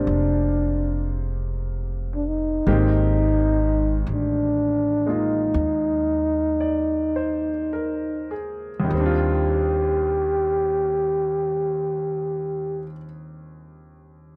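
A breathy, whispered trombone carries the melody in this tender, romantic jazz ballad excerpt, its dark tone colored by light vibrato, soft attacks and scooped notes that sit up front with an intimate, solo character. The tempo is very slow, between 32 and 48 BPM in a swung 4/4, and it gradually slows through the first 8.9 seconds. A clear concert grand piano accompanies with smooth, vintage voicings and deep bass, moving from Bb9 to Abmaj9 and resting on Ebmaj13 in Eb major. A woody pizzicato upright bass with steel strings sits close and present beneath. After the trombone and bass fall silent near 12.9 seconds, the piano rings on alone until 14.4 seconds. The dry, close sound recalls a 1970s studio, with little reverb around the players.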